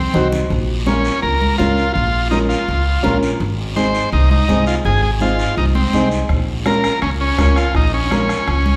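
A driving, danceable cumbia in Bb minor at 166 BPM opens on a brief drum fill, with a buzzy, lightly vibrato-laced combo organ carrying the melody up front over a growly, woody pizzicato upright bass, an intimate upright piano with audible action noise, dry thick-skinned congas set back in the mix, a raspy guiro, and a soft-beatered bombo joining at 6.3 seconds, all heard in this short excerpt inside the wet reverb of a recital hall.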